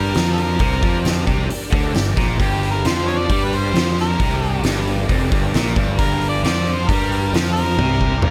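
A straight 4/4 groove at 134 BPM drives this smoky, brooding blues rock and southern rock power-trio passage in G minor, cut from a longer piece, as an oversized low-tuned acoustic drum kit with a fat snare and punchy kick sits up front from 0.1 seconds, under a double-tracked, overdriven picked electric guitar riff, a fuzzy picked electric bass, a very quiet, gritty tonewheel organ holding thick chords through a slow rotary speaker with key click, and a clear, present harmonica carrying the melody with light vibrato, all in a small room with light reverb, before a drum fill at 7.8 seconds.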